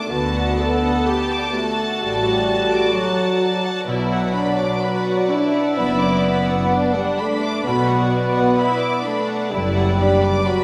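A mellow French horn section sits up front with sustained chords in this uplifting, hopeful cinematic score, moving freely in rubato and shifting from D to B minor at 3.9 seconds. Two dark, intimate violin lines carry the melody and a second line, bowed sul tasto with light vibrato and soft attacks, while pure, floating violas accompany from a distance and a very quiet, ringing concert harp adds fingerpicked arpeggios. Cellos in the background and double basses supply a warm bass, and a wet scoring-stage reverb places the orchestra further back in the room.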